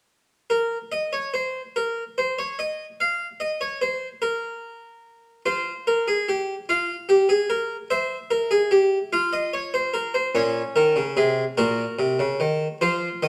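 A plucked, full-bodied Italian-style harpsichord with two sets of strings plays a solemn, contemplative baroque-style three-part fugue alone from 0.5 to 13.3 seconds in a slow 6/8 at 49 BPM, tuned to A4 = 437 Hz, its lines opening unharmonized before settling on F minor and passing through C7 and B-flat minor, all heard from further back in a stone room with a moderate reverb in this passage cut from a longer piece.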